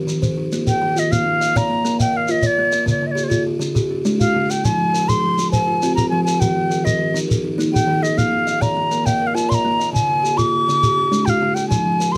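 A buzzing kalimba and a second, hollow-boxed kalimba open together with rippling, interlocking arpeggios in a hypnotic southern African traditional cycle, the buzzing instrument woody and mellow, the thumb-plucked one sitting in the background with a boxy small-room ring. A grainy shekere enters at 0.1 seconds, and an airy wooden flute comes in up front at 0.7 seconds with a straight, tongued tone, carrying the melody over a steady 12/8 pulse and a cycling chord progression. Close, detailed microphones and light reverb frame this portion of a longer piece.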